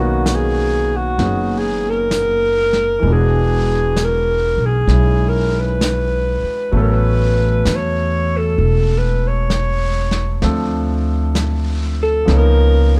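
Tender and romantic, this slow jazz ballad at 65 BPM swings gently in 4/4, with a mellow alto saxophone carrying the melody as a subtone solo with light vibrato, set back in a roomy plate reverb. A clear concert grand piano accompanies with long sustain and audible action noise, while a woody, pizzicato upright bass sits up front. A brushed drum kit with a smooth, rolled-off top enters at 0.3 seconds on snare and hi-hat, all within a dark production that moves from Bmaj9 through A69 to a closing C#13 in this short section of a longer piece.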